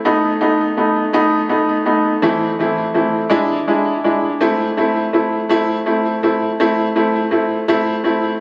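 Caught on a phone in the room, the recording carries a moderate concert-hall reverb with a 1.9-second tail, layered with club reverb and compression. A solo upright piano sits up front, its woody, brilliant tone and short sustain touched with a delay as it plays in the range from E3 to E4. This aching, melancholic pop fragment moves in a slow 6/8 at 55 BPM counted in dotted quarters, with a straight feel in A minor and tuning set to A4 = 438 Hz. The harmony runs from B7 through Am/E and E7 before settling on Am at 4.4 seconds. An opening section gives way to a new passage at 6.6 seconds, and the piano rings out until 8.3 seconds in this short cut from a longer piece.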